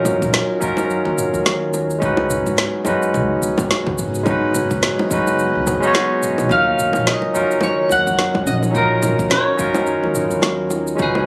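Sunset chillout in Eb minor at 107 BPM with a swung 16th feel, warm and wistful, moving between Ebm9 and Db9sus4 chords in this brief cut from a longer piece. A bright, barky tine electric piano with tape echo sits up front over a very quiet, ethereal pad, a dark pizzicato upright bass, round low-tuned bongos, a deep house kit with a woody snare, shaker and toms, and a deep electronic kick in the background. At 6.5 s a clean, picked electric guitar takes the melody through spring reverb and tape echo, joined by a hollow, ringing kalimba playing arpeggios, all heard with a phone-in-the-room quality, club reverb and compression.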